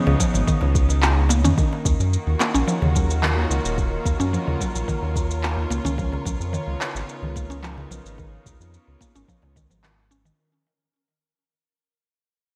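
Organic downtempo with a hypnotic, meditative pull, cut from a longer piece: a barely audible clean lap steel guitar melody murmurs only in the opening second, over gut-toned studio strings holding sidechain-pumped chords on Db7 and Ebm7, woody FM mallet plucks arpeggiating through chorus and digital delay, and a round, deep analog bass up front. A soft electronic kick, gated-reverb shaker and handclaps, and a very quiet clay darbuka carry the groove, with the kick dropping out from 1.0 to 1.6 s before the passage begins fading out at 1.6 s. From 2.2 s a breathy, wind-like tuned noise texture drifts in the background, set in a lush hall reverb with bright 1980s-style digital sheen.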